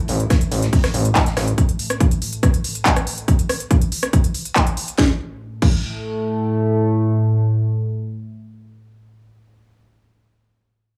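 Set in a light, small-room ambience, this dark, hypnotic slice of driving peak-time techno opens on a drop where a nasal, chorused analog drone pulses under sidechain pumping, while a gritty, saturated synth bass and a dry, fat-snared 70s kit flicker briefly beside an overdriven techno kit of cracking snare, smooth hats, claps, rim clicks and crash, all anchored by a heavy, up-front electronic kick until 5.8 seconds, after which the evolving drone carries on alone to 9.2 seconds.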